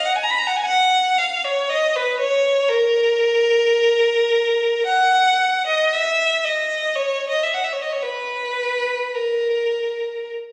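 Classical solo violin in a free, expressive vein, this short excerpt from a longer piece moves at a slow, rubato 49-61 BPM in 3/4, its mood meditative and yearning. A single bowed violin sits up front with a rich, smooth tone and vibrato, playing evenly in a range from A#4 to B5 and tuned to A4 = 441 Hz from 0.0 to 10.3 seconds. The sound carries a moderate concert-hall reverb, captured on a phone in the room with studio reverb added, and its top end is muted, reaching nothing above 10.8 kHz.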